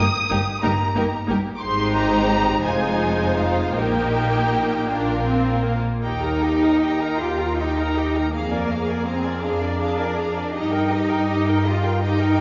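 A tender, serene slow movement for string orchestra in a gently rubato 6/8 around 51-62 BPM opens with every section bowing together, the first violins carrying the melody with a warm, soft-attack vibrato while the second violins trace a focused second line above a clear, distant viola accompaniment. Cellos and double basses share the bass, the cellos rich and even and the basses smooth-topped, as the harmony moves gently through Eb major from Eb/G toward Abmaj7 and Fm7. At 6.0 s the phrase turns to a second section built on Eb and Bb7/F, all heard from further back on a lush, wet scoring stage with a softened top end, in a fragment cut from a longer piece.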